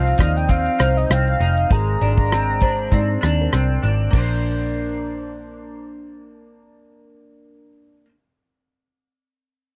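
Indie pop with a bedroom-pop haze, this short, dreamy and laid-back cut drifts along at 99 BPM in Bb major, with a gentle 16th-note swing. A velvety synth lead carries the melody with a warbling, vintage sawtooth tone, subtle chorus and tape echo, then drops out at 3.5 seconds, while a woody, thumbnail-plucked kalimba rings softly in the background as a second line until 5.9 seconds. An electric guitar through a small old amp plays twangy, slightly broken-up accompaniment, compressed and treated with analog chorus and vibrato. Underneath, a foam-muted, round picked bass and a damped 70s kit with a tight kick, rolled-off top, rim clicks, hi-hat, shaker and crash sit up front, though the drums stop at 4.3 seconds. The harmony moves from F5 to Abadd9 and settles on Bbadd9 at 4.1 seconds, all captured in a dry, close 1970s-style studio sound with little reverb.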